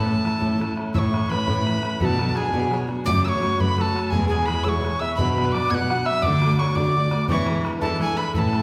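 A straight 6/8 jig rhythm at 113 BPM drives this lively, cheerful Celtic folk fragment in A major, with a breathy, crisp-edged tin whistle carrying the melody up front with vibrato and chiff, a reedy accordion with tape echo and a very quiet, round double-strung mandolin sharing the second line, a bright jumbo steel-string guitar picking through A, Bm, F#m, E, D and E7, a clear, focused bowed cello with vibrato holding the bass, and a boomy, distant bodhran entering at 0.1 s, the ensemble heard from further back in a reverberant recital hall.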